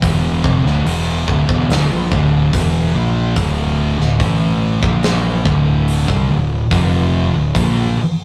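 A slow, heavy stoner and doom metal riff in D minor opens at once, with two thick fuzz guitars playing together from the first second, one up front and one set back in the background, both dark, picked and drenched in distortion across a low range from D2 to Bb3. Beneath them, a growling fingered electric bass adds an overdriven, amped weight, sitting down between D1 and C2. A big acoustic rock drum kit holds a straight 4/4 at 72 BPM, pushed up front with a tight kick, a medium-tuned snare and hi-hat, its mid-forward sound rounded off at the top in a roomy space. The excerpt rests on a single D minor chord, giving it a heavy, sludgy mood. Light reverb and the rough, rehearsal-room quality of the recording add a raw, unpolished feel to this short cut of about 8 seconds taken from a longer piece.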